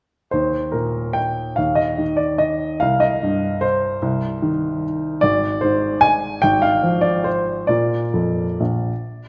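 Graceful and sparkling, this short classical piano waltz in Eb major moves in 3/4 at 130-156 BPM with a supple rubato feel, passing through Eb, Cm, Fm/Ab and Bb. A solo upright piano with a woody, natural tone sits up front, playing from 0.3 to 9.3 seconds across a span from Ab1 to Ab5. A wet recital hall reverb surrounds the piano, with a 1.4-second decay.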